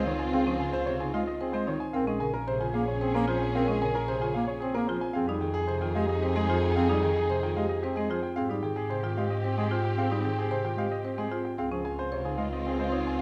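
Propulsive and hypnotic, this piece of minimalist classical pattern music moves in a steady three-beat metre with a straight feel, and it is clearly cut from a longer work. A grand piano carries the melody with an intimate, natural tone in which the noise of its action can be heard, while a mellow soprano saxophone sits in the background with a smooth second line. Beneath them, a bass clarinet with a soft attack shapes the accompaniment, and a marimba played with medium mallets spins woody, mid-forward arpeggios on padauk bars. A rich studio string section holds expressive, bowed chords with vibrato, and a focused, clear double bass, bowed by one player and placed up front, anchors the low end. The harmony drifts through major-seventh and minor-seventh chords, opening on Dbmaj7 and returning to it at 11.6 seconds, all set in the lush wash of a recital hall.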